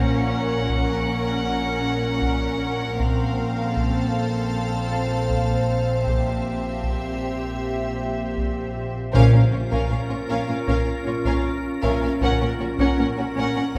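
This tense, uneasy suspense cue opens at 78 BPM in Bb Hungarian minor with bowed, sul tasto string sections: clear, floating violins carry the melody over a second violin line, dark violas, and a rich double bass and background cellos anchoring Bb. Around them sit an icy, crystalline glass pad with chorus and a very quiet, brilliant baby grand piano adding texture. Heavy, saturated taiko drums enter at 0.7 s, and very quiet hard-mallet timpani join at 9.1 s with a band accent as the harmony settles onto Bb minor, all heard from further back in a reverberant scoring stage.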